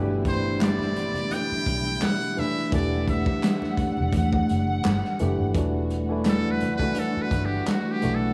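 Smooth and introspective, this short neo-soul R&B excerpt in E minor moves at 85 BPM with a lightly swung sixteenth feel, as a barky, lightly overdriven tine electric piano accompanies and lush, woody strings hold G6 and Em11 chords over a round, foam-muted electric bass, gritty breakbeat drums with handclaps and very quiet ringing congas, while a buzzy, breathy metal-muted trumpet carries the melody through a diffuse ambient delay and takes a solo from 5.5 seconds, all in a dreamy mix soaked in plate reverb.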